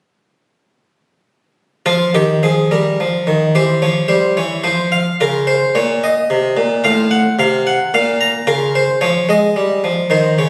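A solo Flemish-style harpsichord enters at 1.9 seconds with a round, plucked tone on a single set of strings, sitting up front as it plays a solemn, introspective baroque-style suite movement in 3/4 at 110 BPM, taken with a flexible rubato. The harmony moves through chords such as Ebadd9, Bbm and Dbmaj13, with brief pauses in the chords before settling on Eb/G near the end of this short fragment of a longer piece. The sound is heavily wet and compressed, with a long, roomy reverb, as if captured on a phone in the space.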